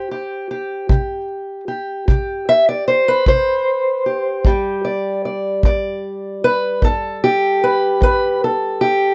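A dark, boxy fingerpicked steel-string parlour guitar carries the melody up front in this rollicking, gritty acoustic country blues fragment in a straight 12/8, moving from a C5 chord to G at 4.4 seconds. A punchy kick drum, heard with brushes and set close in a small room, joins at 0.9 seconds and drops out at 8.2 seconds. The dry, close sound with little reverb recalls a 1970s studio.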